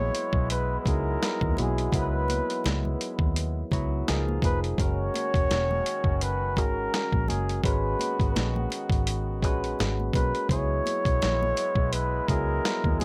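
A lightly reverberant, intimate mix opens this introspective, smooth neo-soul R&B excerpt in C# dorian at 84 BPM, with a 16th-note swing feel. Up front, a breathy, whispered flugelhorn sings the solo melody over a barky tine electric piano and punchy trombone-section stabs, all three bathed in plate reverb, while a dark, round, foam-muted electric bass sits close alongside a gritty, compressed sampler-style kit with a thumpy kick. The drums come in at 0.1 seconds and high-tuned congas join quietly in the background at 0.5 seconds, as the harmony moves from C#m9 through C#13, F#13 and G#m7 to C#m7.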